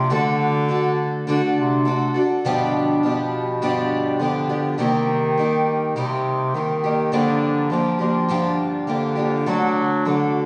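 A shimmering, octave-doubled picked twelve-string acoustic guitar carries the accompaniment through this haunting, intimate acoustic folk excerpt in G minor at 102 BPM, while a clear, roomy bass clarinet in a classical style plays a low second line, both sounding from 0.0 to 10.5 seconds over chords moving from D through G7, Cm7 and Gm7 back to D, all bathed in the reverb of a church or concert hall.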